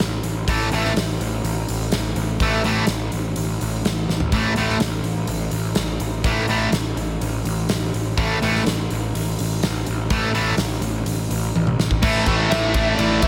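A sludgy, double-tracked distorted guitar leads this heavy, driving hard rock passage, entering at 0.5 seconds with an overdriven, picked riff between A2 and A3 over an A5 chord. Beneath it, a fuzz-soaked picked electric bass sits up front on A1, punchy and direct-amped with overdrive. A huge arena drum kit drives a straight 4/4 at 125 BPM with a punchy kick, a medium-tuned snare, toms, hi-hat, crash and ride, its bright cymbals ringing in a pumping hall. Fills crop up along the way, one landing at 11.5 seconds to push into a new section. There, at 12.5 seconds, a biting lead guitar breaks into a brief solo between D5 and E5, its overdriven tone trailed by tape echo. Light reverb and studio ambience frame this short cut from a longer piece.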